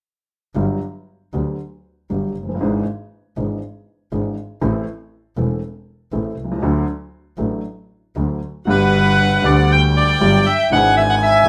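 Tango excerpt at 119 BPM in a passionate, playful rubato, where a woody upright piano with audible action noise and a clear, bowed double bass with smooth vibrato set out the G major harmony from 0.6 s before a reedy, boxy bandoneon takes the melody at 8.7 s alongside a distant, expressive violin second line sung with portamento, all in a moderate studio reverb.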